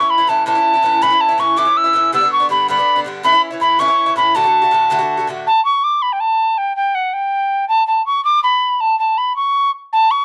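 Celtic folk jig in 6/8 at 108 BPM in D major, rollicking and lively, where a mellow wooden whistle with a pure, chiffy attack and vibrato carries the melody up front while a picked Irish bouzouki with metallic double strings accompanies until 5.5 seconds, after which the whistle plays alone in a small room with a rough home-demo feel, cut from a longer piece.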